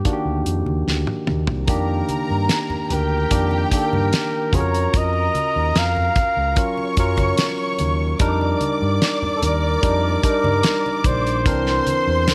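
Light reverb gives this cinematic, bittersweet excerpt of lush 1970s-style soul a close studio sound, with a dry, mid-forward drum kit and a barky, lightly overdriven tine electric piano played through a combo amp both up front. At a relaxed 74 BPM in a straight 4/4, the electric piano's chords move from Ebmaj7 to Gbmaj7 and back, reaching C9 at 11.5 seconds. A warm, close-miked flugelhorn carries the jazz-style solo melody with vibrato from the opening. The damped kit has a fat snare and tight kick and plays a fill from 0.9 to 1.7 seconds, after which a rich bowed string section enters with a focused, vibrato-laden second line. Underneath, a round, punchy, amped fingered electric bass holds the low end, while thick-skinned, low-tuned congas sit in the background.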